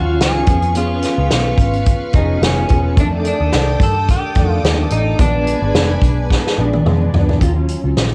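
This wistful, lonely bedroom-pop excerpt opens with a fingerpicked jumbo steel-string acoustic guitar, a muted electric bass, a string machine and an electric guitar through a small old amp all sounding at once, with an unplugged drum kit arriving at 0.2 seconds. It moves at 108 BPM in 4/4 with a light 16th-note swing, tuned to A4 = 438 Hz, over a progression of Db7, F13, Bb7b9 and Ebm9. The slightly broken-up electric guitar carries the melody, softened by subtle chorus, cassette tape and tape echo, while the full-bodied acoustic guitar accompanies with ensemble chorus and a warbly pitch drift. Lower in the mix, the lush string machine holds slow-attack sawtooth chords with a sub octave, and the dark, round, foam-muted bass sits prominently beneath. The drums sound distant and roomy yet up front, played with bundle sticks on a tight kick and medium-tuned snare, and a drum fill runs from 6.3 to 7.4 seconds. 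Light reverb and a home-cassette character give the whole an intimate, lo-fi feel.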